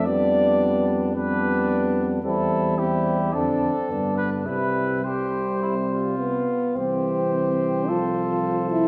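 Classical brass quintet music, noble and stately, cut from a longer piece, with two mellow, soft-attacked trumpets carrying the melody and a second line, a warm French horn and a distant trombone with light vibrato filling the accompaniment, and a roomy tuba holding the bass, all five sounding throughout the 8.9 seconds in a wet concert hall reverb as the harmony settles on C at 4.5 seconds before a new section begins at 6.8 seconds.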